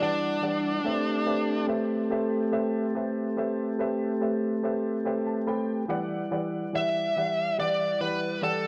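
Smoky and mournful, this slow 12/8 blues excerpt moves at 48 BPM with a straight feel, drifting from Em9 to Am9 and back to Em9 at 5.9 seconds. An overdriven, picked electric lead guitar carries the melody up front, while a woody, slightly detuned upright piano with short sustain accompanies and slips in a fill from 4.6 to 5.9 seconds. A flute-like tonewheel organ with key click and a slow rotary speaker holds soft, clean sustained chords, all bathed in a wet echo chamber reverb.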